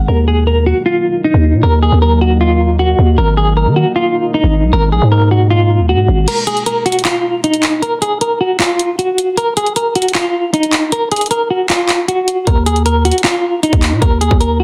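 Brooding and hard-hitting, this trap-flavored hip hop excerpt moves at 155 BPM with a half-time feel in Eb minor. A clean, fingered semi-hollow electric guitar carries the melody up front throughout, its hollow-body tone pulsing with tremolo over chords moving from Ebm to Abmadd9. Beneath it, a deep, moody sawtooth pad with a sub octave, chorus and built-in reverb sustains chords in the background until about 6.2 seconds, while a growling, buzzy 808-style bass with a fast attack and decaying tail hits hard up front. At 6.3 seconds the harmony drops away and the bass falls silent, and an electronic trap kit enters beneath the guitar with a hard-clipped kick, warm hats, handclaps and crash cymbal. The bass returns at 12.5 seconds on an Eb5 power chord, set in light digital ambience and a dense, heavily limited modern master.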